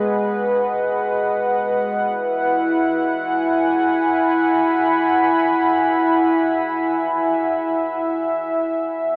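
Peaceful ambient fragment, cut from a longer piece, in which a lone, up-front analog synth pad, mellow and smooth with a sub-octave beneath its sawtooth and triangle tones, swells in slowly and sustains with a long release through chorus and tape echo, drifting from G#m7 to Eadd9 at 2.0 seconds, all bathed in a vast cathedral reverb and the worn, warbling pitch drift of old cassette tape with an AM-radio haze.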